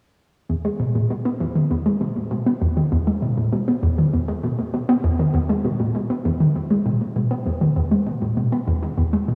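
Soaked in a lush hall reverb with a trace of small-room ambience, this dreamy ambient excerpt at 99 BPM in E lydian feels cosmic and expansive, carried by a lone analog pluck, round, detuned and up front with chorus and tape echo, playing a riff from 0.5 to 9.3 seconds.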